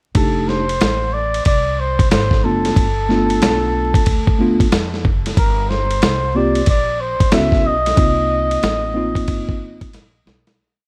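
Jazz-hop with a smoky, nocturnal mood, where a gritty, compressed boom-bap beat with a thumpy kick under a swung ride cymbal sits up front, a woody upright bass walks with muted ghost notes and chromatic approach notes, and a worn, slightly out-of-tune tine electric piano comps freely in rootless voicings while a distant flugelhorn carries a motif-based solo melody with vibrato, scooped notes and tape echo, all beneath light reverb and vinyl crackle before a fade-out from 8.0 seconds and a closing drum fill at 9.9 seconds.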